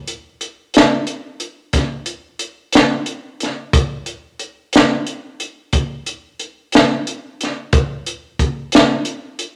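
A slow 12/8 blues pulse at 60 beats per minute, counted in dotted quarters and played with a straight feel, carries this short passage cut from a longer piece. A compact cocktail drum kit is the only part, entering at 0.1 seconds and playing through to 9.5 seconds on hi-hat, kick drum and snare drum. The kit sounds acoustic and sits up front, with a dark, rolled-off top, a punchy kick and a high-tuned snare. A moderate large studio reverb rounds out the sound, lending the smooth drums some air around them. The mood is rollicking and swaggering, a single stretch of groove that holds its easy strut from start to finish.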